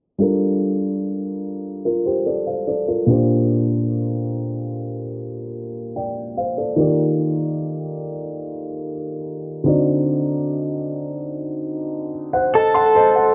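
Through the hazy low-pass filter and cassette tape of a small booth recording, this late-night, longing R&B piece in G minor moves at 73 BPM as a dark, mellow grand piano with audible action noise lays down intimate chords from Gm9 to D7b9 under a filter sweep, then plays a fill at 12.1 seconds just before a clean, compressed electric guitar enters up front at 12.6 seconds with a single picked note.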